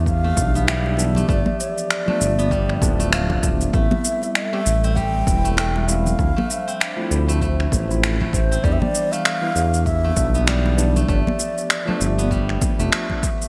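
Mystical and hypnotic, this organic downtempo passage, cut from a longer piece, rides a swung 4/4 groove over a cycling progression of Em7, G7, Am7 and Dm7. A breathy low ney carries the melody with vibrato and a crisp attack, its close-miked, expressive line trailed by digital delay until it stops at 12.9 seconds. Beneath it, a smooth sawtooth-and-triangle synth bass sits up front, while a steel-string zither played with fingerpicks rings out silvery arpeggios through its own delay. A punchy, overdriven electronic kick and up-front electronic shaker and finger snaps, the latter touched with gated reverb, anchor the beat, with bright, dry congas and bongos struck by hard hands tucked behind them. In the background, a dark, warbling tape-like pad holds nostalgic lo-fi chords with chorus, 12-bit sampler grit and sidechain pumping, and a clean tine electric piano enters at 0.4 seconds with analog chorus, pumping and delay, the whole set in a bright 1980s-style digital production.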